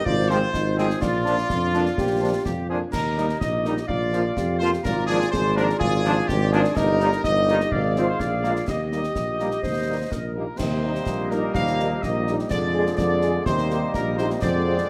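Spirited and proud, this military-style wind band march in Eb major moves at 125 BPM in a straight 2/4, with a mellow, softly attacked trumpet section carrying the melody up front over a close-miked tuba bass, while warm euphonium and vibrato-tinged woodwinds add second lines, a distant, roomy French horn section accompanies, a bright trombone section holds sustained chords, and concert bass drum, snare and dark clash cymbals sound close and dry, all within a moderate large-studio reverb, shifting into a new section at 10.6 seconds in this excerpt cut from a longer piece.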